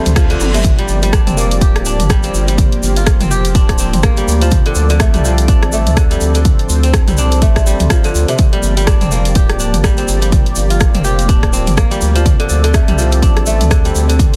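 Afro house with a driving, warm feel and a swung sixteenth groove, this short cut from a longer piece opens with a reverse cymbal as a punchy, overdriven electronic kick settles up front beside a house kit of bright hats, rim clicks and toms that starts with a quick fill, a grainy egg shaker, a round, deep analog bass, a crisp fingerpicked kora playing ringing arpeggios through digital delay, and a smooth, detuned sawtooth pad holding chorused chords, with the pad, kora and bass pumping against the kick in a dense, dry, heavily limited mix over Dm7 and Gm7.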